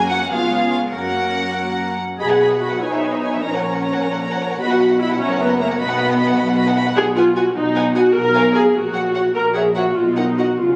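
Lively and cheerful, this short passage from a longer classical-period movement for string orchestra moves in a lilting 6/8 with a rubato feel. A violin section carries the melody with an intimate, close tone, light vibrato and a smooth top, while a second violin section adds a woody studio-toned second line from 0.1 seconds. The viola section sits up front as the most prominent voice, lush and dark in its accompaniment, and the cello and double bass sections anchor the bass: the cellos pure and floating with a soft attack, the basses rich. Every section bows sul tasto, and the harmony arrives on a Bmaj7 chord at 10.0 seconds. The strings are bathed in a wet scoring-stage reverb and captured on a phone amid club ambience.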